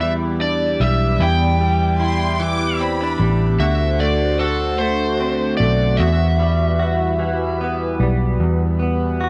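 Dramatic and aching, this six-eight pop ballad in E minor moves slowly at 50 BPM, its overdriven slide guitar singing a bright melody up front until 7.9 seconds over a double-tracked, clean, compressed electric guitar recorded direct and a dark, round, foam-muted electric bass. An airy, breathy pad holds soft, detuned chords coloured by chorus and phaser, while a lush violin section adds a brief vibrato-laden second line with portamento from 2.0 to 3.4 seconds. The harmony moves from Em7 to D7 and settles on Emadd9, all in light reverb, in this fragment cut from a longer piece.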